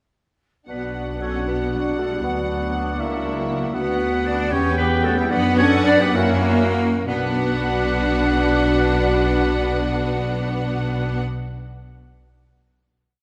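Dramatic and stormy, this short, whole classical-period movement in B minor for symphony orchestra moves in a rubato 6/8 at 63-80 BPM. Tremolo violin sections carry the melody and a second line over lush tremolo violas, while an airy flute ensemble, a warm clarinet, an oboe and a bassoon sit in the background, mellow French horns hold sustained chords, bright cellos double the tune at the octave and up-front double basses sustain the bass, all set in a moderate scoring-stage reverb, slowing from 3.0 seconds before landing on a held final chord at 7.1 seconds.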